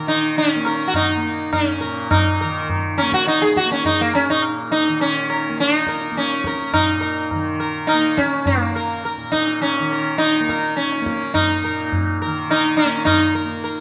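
A buzzing, plectrum-plucked sitar sits up front with its shimmering sympathetic strings, carrying an introspective, solemn Hindustani melody over a bright, softly plucked tanpura drone and a high-tuned tabla with a short ring, all in a moderate recital-hall reverb across this 13.8-second cut from a longer piece.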